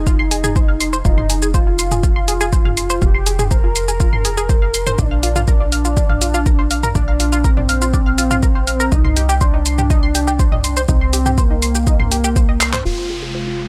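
Dark and hypnotic, this melodic techno excerpt runs at 122 BPM in F dorian, moving through Fm, Bbadd9 and Cm. An up-front, overdriven electronic kick drives it alongside a deep house kit of handclaps, hi-hat, shaker and filtered toms, while a punchy detuned sawtooth sequencer bass and a chorused, phased arpeggio synth pump under sidechain around a thick, ring-modulated unison lead carrying the melody through a digital delay. After a drum fill at 12.6 seconds, an airy, evolving resonant pad and a downlifter arrive at 12.9 seconds, all in a dry, close mix.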